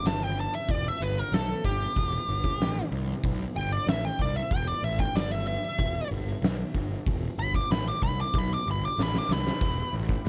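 Smoky and brooding, this short fragment cut from a longer piece is blues rock and southern rock in a power-trio mold, riding a straight 4/4 feel over a single chord. A bluesy lead guitar solos from the start, its picked, distorted tone colored by wah as it ranges from G4 up to D6. Underneath, a fuzz-laden picked electric bass sits low and amped, matched by an oversized, low-tuned acoustic drum kit with a punchy kick, fat snare, hi-hat, dark splash cymbal and a gritty, saturated sound in a big, pumping room. The drums break into a fill at 9.0 seconds, and at 9.3 seconds a thick, overdriven tonewheel organ slips in behind the band with sustained chords, key click, percussive third-harmonic attack and a chorus vibrato shimmer. Guitar, bass and drums stay up front in a dry, close mix, with the organ tucked into the background.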